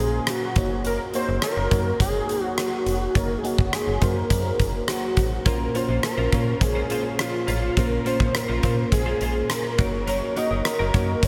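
A fat, detuned sawtooth lead with vibrato and a diffuse delay carries the melody over a glassy, chorused FM electric piano and a snappy, metallic FM bass, with a punchy, up-front arena drum kit of kick, hi-hat and rim click joining at 0.3 seconds. This moody, urgent 1980s-style pop fragment moves at 104 BPM in a straight 4/4, moving between Bbmadd9 and Gb6 chords. At 5.5 seconds a bright, clean, direct-recorded electric guitar adds a compressed, picked riff with analog chorus and delay, all set in a dreamy mix soaked in a huge ambient reverb.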